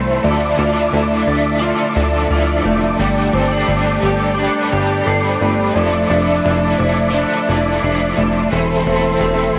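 A straight, unhurried pulse in four carries this hazy, haunting dream pop fragment, cut from a longer piece. Up front, a plucky analog bass gives a punchy, funky low end, its sawtooth and wave-folded tones snapping open with a fast filter attack and then decaying. Above it, a mellow tonewheel organ holds soft, flute-like chords through chorus vibrato, a fast rotary speaker and plate reverb. Two picked electric guitars fill the middle: a bright, compressed overdriven part shimmers with tremolo, analog chorus and plate reverb, while a darker guitar at the edge of break-up plays arpeggios through analog chorus and delay. A very quiet celesta adds delicate, bell-like sweetness from hard felt hammers. The harmony drifts from Dmadd9 to Gsus2, Dmadd9/F and Am/E, all heard through a small, wet booth ambience with the soft grain of a home cassette recording.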